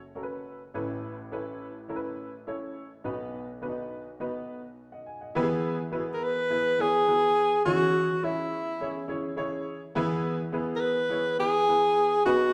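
Recorded live in one room, this soul cut is bathed in a wet, spacious studio reverb. An upright piano with a woody, natural tone sits up front from the start, carrying the accompaniment through chords that settle onto E at 5.4 seconds. At 6.1 seconds a breathy tenor saxophone enters up front with a jazz-style solo melody, its mellow subtone, soft attack, light vibrato and scooped notes lending the uplifting mood a gentle glow.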